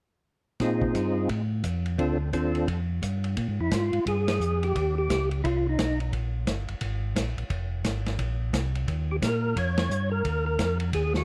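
A greasy, bluesy soul jazz organ trio excerpt opens at 0.6 seconds with a punchy vintage drum kit of dark cymbals and medium-tuned snare swinging at 174 BPM in Bb major under a round, dark organ bass line and a fat, percussive tonewheel organ melody with key click, overdrive, slow rotary speaker, chorus vibrato and slapback echo, which drops out at 6.0 seconds and returns at 9.1 seconds, all captured in a dry, close 1970s-style studio sound with light reverb and band accents punctuating the groove.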